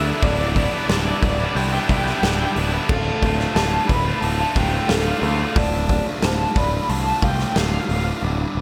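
A big, roomy studio sound frames this cathartic, cinematic post-rock excerpt, where punchy arena drums up front play alongside a growling overdriven bass, a fuzzy background guitar riff sits alongside a tight distorted guitar riff that stops at 6.1 s, and a raw garage guitar carries the melody through tremolo and delay, while a very quiet, twangy pedal steel holds chords until 5.5 s and a felt-muted upright piano adds dark, mellow arpeggios with delay in the background.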